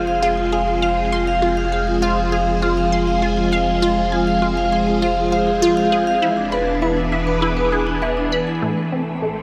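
Set in a lush concert-hall reverb with a digital sheen, this ambient excerpt in F minor drifts at 100 BPM, hypnotic and cosmic. A swirling, vintage string machine holds sustained chords through chorus, phaser and shimmer reverb, while a metallic, ringing vibraphone plays arpeggios with medium hard mallets, its motor off, until 8.6 seconds. A juicy, squelchy blip pluck plays a resonant riff through phaser, analog delay and shimmer, over a deep, round sine sub bass, as the harmony moves from Fm to E7 at 6.2 seconds and lands on Am.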